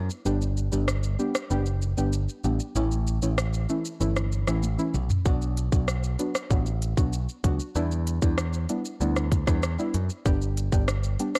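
Dancehall with a tough, sultry mood, cut from a longer piece, where a bright, punchy picked electric bass and an electronic drum kit of hi-hat, tight kick, rim click, shaker and toms sit up front while a deep, mellow chord stab with chorus warbles through G, A, Bm and Em7 in a dark production with light reverb, a drum fill closing the opening break at 4.6 seconds.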